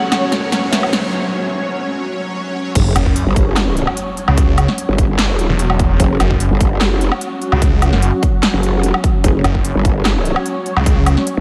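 Menacing and chaotic, this heavy wobble dubstep clip runs at 148 BPM in a half-time feel, opening on a build-up where a soft, floating violin section touches a brief melody in the background for the first second over a lush, airy supersaw pad, filtered and pumping, while a riser and sub drop, a drum fill and a break set up the drop at 2.8 s. There an electronic kick enters with a growling, wobbling bass, joined at 3.0 s by a snarling, distorted sawtooth bass, both up front, as the overdriven big-room dance kit drives on with punchy snare, crisp hats, handclaps, crash and woodblock. The dreamy mix is soaked in a cathedral reverb.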